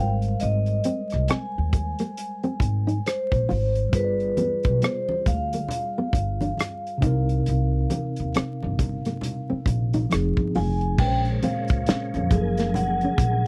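This smooth, late-night neo-soul and R&B piece, cut from a longer recording, opens with soft-mallet vibraphone carrying the melody in a ringing, metallic voice with slow motor vibrato. Beneath it sit a thumb-plucked nylon-string guitar on a second line, mellow tine electric piano accompaniment, and a woody, thumpy pizzicato upright bass on gut strings. From 0.2 seconds an up-front drum kit with dark cymbals, a tight kick, medium-tuned snare, rim clicks, hi-hat and crash sets a slow 68 BPM in 4/4 with swung sixteenths, while the harmony moves from Abmaj9 through G7b9 and Cm7 to Fm7. Ringing congas join in the background at 4.4 seconds. At 11.0 seconds the chords turn to Bbm9 and Gbmaj9 as a smooth tonewheel organ enters with sustained chords through a fast rotary speaker and chorus vibrato. The sound is dry and close, in the manner of a 1970s studio recording, with a layer of vinyl crackle.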